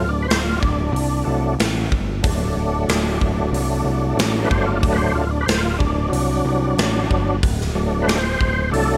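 A gritty, overdriven tonewheel organ with key click, chorus vibrato and a slow rotary speaker takes the lead with thick sustained chords on D, joined at once by a growling, punchy picked electric bass, before a big acoustic rock drum kit with a medium-tuned snare, hi-hat and kick drum enters at 0.3 seconds, giving this raunchy, driving blues rock and southern rock cut at 93 BPM in D mixolydian an up-front, power-trio sound in a natural big room with light reverb.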